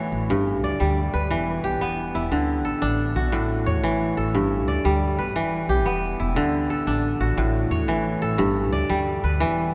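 West African traditional string music in 12/8 at 118 BPM, this hypnotic, flowing excerpt in G lydian cycles through G, Em, D and A as a bright, crisp kora plays ringing fingerpicked arpeggios up front. Beneath it, a pizzicato upright bass with steel strings adds a woody, dark, thumpy low end across the full 9.7 seconds. A heavy cathedral reverb places the pair in a vast, echoing space.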